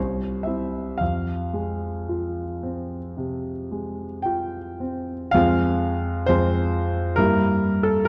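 A rubato 4/4 pulse drifts between 54 and 68 BPM in this mournful, melancholic romantic nocturne for solo piano in F minor, tuned to A4 = 437 Hz and cut from a longer piece. The concert grand sits up front with a clear, natural tone and deep bass, ranging from C2 to G5 as the harmony moves from C to F minor and, at 7.2 seconds, to E diminished over G. A wet scoring-stage reverb and a dark production wrap the piano in a shadowy, spacious atmosphere, while its opening idea returns at 5.3 seconds.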